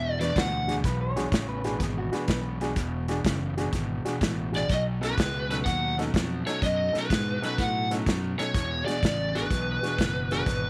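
An overdriven lead guitar, pushed through a small cranked amp, opens with a brief phrase over a dark, hollow-bodied semi-hollow guitar riff and a round, punchy fingered bass, as this gritty, laid-back electric blues shuffle gets underway at 125 BPM in a swung 4/4. A natural country drum kit sits up front with a punchy kick, medium-tuned snare and hi-hat in a small-room sound, while a woody, polished upright piano fills in the accompaniment. Around 0.9 seconds a second electric guitar through a small old amp adds a slightly broken-up, lo-fi line with slapback echo, stopping by 2.4 seconds. The picked lead returns at 4.6 seconds, just before the harmony moves from E9 to B9 at 4.7 seconds, and carries the melody through the rest of this excerpt, settling back on E9 near the close. Light reverb gives the track a touch of space, and the passage is cut from a longer piece.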